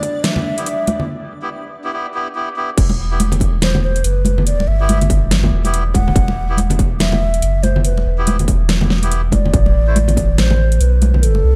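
A breathy, hollow low ney carries a meditative melody over a round, up-front dub sub bass and a brief reversed, dreamy texture at the start of this cavernous deep dubstep piece in E minor at 142 BPM with a swung half-time feel. A dubstep kit with a huge snare and metallic hats plays from the outset, joined shortly after by ringing hard-hand congas and reedy melodica stabs with dub echo, while a distorted electronic kick drops out after its first hit and returns at 2.8 seconds, all in a dark production that moves from Em to Am at 9.5 seconds.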